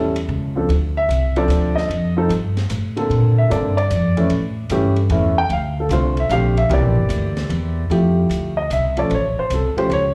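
An up-front upright piano with a woody, warm tone carries the melody, touched by a slapback echo, and takes a solo from 7.9 seconds in this relaxed, playful jazz piano trio cut from a longer piece. The tune swings in 3/4 at 150 BPM in F major, moving through changes such as Dm7, F7, Bbmaj9 and A7 before landing on Fmaj9 and an altered A chord. Beneath it, a pizzicato upright bass with steel strings gives a growly, up-front low end. An open acoustic jazz drum kit enters at 0.2 seconds and sits quietly in the mix, with hi-hat, dark, smooth ride cymbal and a high-tuned snare heard in a small room. The whole performance comes across as a live gig heard through the venue's sound system, wrapped in light club reverb.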